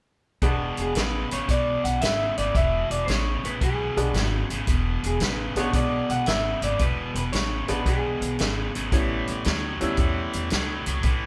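A twangy, slightly broken-up electric guitar through a small old amp carries the melody in this soulful, rollicking electric blues shuffle, entering at 0.8 s and singing through to 8.7 s. Underneath, a bright cranked stack guitar with overdrive drives an overdriven, picked riff in the low register, while a woody pizzicato upright bass with a dark tone holds down the bottom. A bright, brilliant upright piano with short sustain adds present, polished accompaniment in the middle register until 10.5 s. The vintage drum kit sits up front with a punchy kick, a medium-tuned snare and hi-hat, its rolled-off top giving a warm, natural feel. Swinging at 113 BPM in E mixolydian, the band plays live in one stone room with moderate reverb, riding an E7 groove before shifting to A7 at 8.9 s in this short cut from a longer piece.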